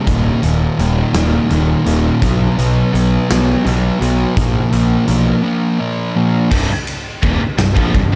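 A fuzzy, up-front sound with light studio reverb opens this short cut from a longer quiet-loud alternative rock piece, cathartic and angsty in mood. It moves slowly at 56 BPM in a straight 6/8, counted in dotted quarters and tuned to A4 = 438 Hz. A double-tracked fuzz guitar drives the riff from the start, joined almost at once by a picked electric bass with bright, overdriven fuzz and a big acoustic drum kit with bright cymbals, a medium-tuned snare and a punchy kick in a natural room. The power chords shift from Eb5 through B5 to Bb5 before settling on C minor at 6.5 seconds. At that point a scooped, high-gain second guitar, double-tracked and bright with slapback echo, joins the riff lower in the mix and plays through to the cut at 8.2 seconds.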